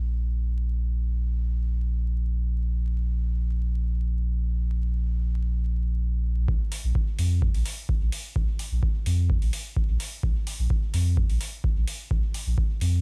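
Dub techno with a hazy, meditative mood, this piece cut from a longer track opens on a round, sine-like sub bass pumping up front between Bb1 and F2, joined at 6.5 seconds by a deep analog kick and moments later by metallic hats, both re-recorded in a large room, all captured in a dry, gritty hardware sound laced with vinyl crackle.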